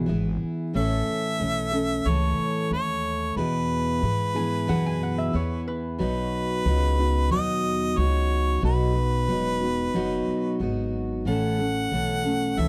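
Heartfelt and sunny, this honky-tonk and classic country excerpt moves at a straight 91 BPM in 4/4 over E, A and B chords, with a bright, up-front picked steel-string acoustic guitar and a woody, thumpy pizzicato upright bass underneath a clear harmonica that takes the melody from 0.8 s with light vibrato and scooped notes, while a nasal, metallic lap resonator guitar slides in a brief second line between 4.4 and 6.0 s, all captured in a dry, close 1970s-style studio sound with light reverb.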